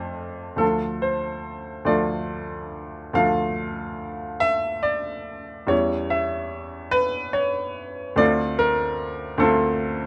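An upright piano opens alone on an F chord before settling onto D minor by 0.6 seconds, setting a nostalgic, tender mood for this romantic classical nocturne. The pace is slow and unhurried, around 48 beats per minute counted in dotted quarters within a lilting 12/8 metre, and the rubato feel lets the time breathe freely. The instrument sounds clear and woody, with a natural, short-sustaining tone that sits up front, spanning from D2 in the bass to F5 at the top. The harmony darkens toward a diminished chord over E at 5.7 seconds before easing onto D minor seventh, leaving the phrase suspended as this section of a longer piece is cut off. Close, detailed miking and very little reverb give an intimate, dry presence, and the piano is tuned slightly high, with A4 at 445 Hz.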